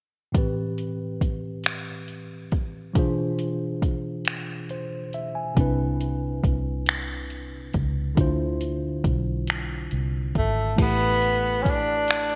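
Intimate and warm, this slow six-eight R&B piece moves at 46 BPM, with a worn, slightly out-of-tune tine electric piano, lightly overdriven through its built-in speakers, carrying the chords from Am9 through E7b9b13, Cmaj9 and Dm9 to Asus2 alongside an electronic drum kit of soft kick, metallic hi-hat, finger snaps and crash cymbal, bathed in gated reverb and caught in a large room. A dark, round, foam-muted fingered electric bass joins at 5.6 seconds, and at 10.4 seconds a clear tenor saxophone steps forward as soloist, playing jazz-style with light vibrato and scooped notes. The bright 1980s-style digital production wraps the sound in a moderate plate reverb, and this is a short cut from a longer piece.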